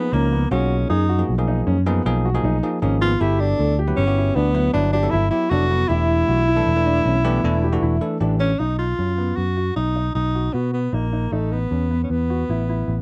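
Driving 7/4 at 156 BPM with a straight feel sets up this intricate progressive instrumental, cut from a longer piece, where a dark, round picked electric bass sits up front beneath a warm tenor saxophone carrying the jazz-style solo melody with vibrato, scooped notes and a smooth top. A bright, bell-like tine electric piano adds clean, direct accompaniment until 8.5 s, while a concert grand piano plays open arpeggios with deep bass and long sustain. The harmony moves from a rootless F#maj7 through B, G and Em7, then B to Asus2 as a second section begins at 8.6 s, all captured in a dry, close 1970s-style studio sound with light reverb.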